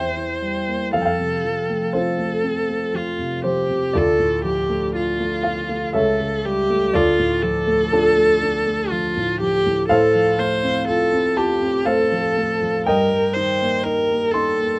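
A single bowed viola with a clear, focused tone and vibrato sings the melody over a dark, mellow grand piano from the very start, both up front in a moderate studio room, in this serene romantic classical excerpt that moves at a rubato 60 BPM in 3/4 through harmonies such as C7/E, F, Dm and A7/C#, ending on Eb/G.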